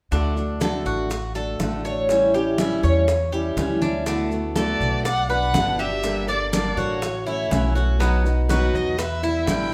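Relaxed and sunny, this Cuban son and guajira piece moves in a straight four-beat feel and is cut from a longer performance. A bright, boxy parlour-style steel-string acoustic guitar is fingerpicked up front, with finger squeaks audible, while a Cuban tres plays metallic arpeggios on its doubled strings. A woody, thumpy pizzicato upright bass with gut strings also sits up front, joined by damped, hard-handed congas in the background, tight high-tuned bongos kept very quiet, and grainy maracas. At 4.6 s a single bowed violin enters with the melody, warm, distant and expressive, with vibrato and portamento. The chords pass from D and A7 through D6, Bm, Gmadd9, A6 and B before reaching Em7, in a moderate large-studio reverb.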